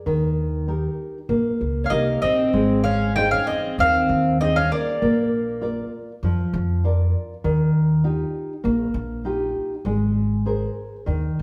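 Mournful and longing, this short fado-style ballad in Ab major moves at 98 BPM in 4/4 with a rubato feel, cut from a longer piece. A full-bodied nylon-string guitar carries the accompaniment from 0.1 s to the close, its thumb-plucked tone deep and classical with audible finger squeak, while a dark, thumpy pizzicato upright bass on steel strings anchors the low end beside it. At 1.9 s a picked mandolin takes the melody, its doubled strings sounding woody and up front, and just before it, at 1.8 s, a fingerpicked jumbo twelve-string acoustic guitar adds a shimmering, octave-doubled second line; both drop out at 5.9 s. The chords pass through Eb, Ab and Bb before settling into Ebadd9 and Abadd9. The band plays live in one room, and a large, wet studio reverb gives the whole performance a lingering, spacious glow.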